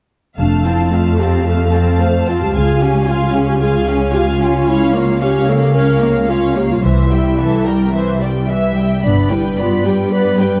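A close, up-front cello section carries the bass with expressive, soft-attacked bowing, anchoring a triumphant, soaring cinematic passage cut from a longer piece. Above it, a lush violin section sings the melody while a second violin section and a dark, smooth-topped solo clarinet weave supporting lines, and a rich viola section fills the middle with even, vibrato-laden accompaniment. A bowed double bass section deepens the low end from 0.4 to 3.0 seconds and again from 6.8 to 9.6 seconds as the harmony moves from F through Db and Bbm/Db to C and G, all set in a moderate scoring-stage reverb with a dusky, mellow production.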